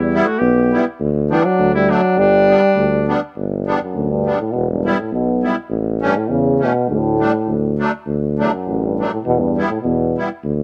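Alpine folk in the manner of an alpine dance band, this short excerpt cut from a longer piece moves at 102 BPM in a bouncy, festive 2/4 with a lilting swing on the eighth notes, set in G major. A mellow euphonium carries the melody up front with a soft attack and light vibrato, its distant, roomy tone giving it a classical poise. A clear trumpet adds a second line above it, also distant and roomy, before dropping out at 3.1 seconds. Underneath, a warm tuba with a vintage low end and light vibrato holds the bass, while a reedy musette accordion in musette tuning shimmers through the accompaniment close to the listener. A moderate spring reverb lends the whole band a gentle halo, and the harmony passes through E minor, G, D, A and a suspended D before settling back on E minor as the passage ends around 10.6 seconds.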